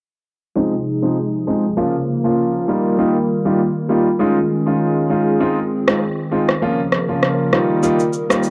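An intimate grand piano, up front with audible action noise and long sustain, carries the accompaniment from 0.6 seconds in this mellow, hypnotic afrobeats excerpt in F minor at 99 BPM, cycling through Fm7, Bbm, Ebadd9 and Dbadd9 with a gentle swing. Beneath it, a hollow, flute-like pad with chorus, slow attack and long release holds dark sustained chords, while a filter sweep runs through the passage and both parts take on a cassette-tape softness. At 5.9 seconds a layered electronic rim click and shaker enters up front, set in light digital ambience that keeps the home-recorded feel.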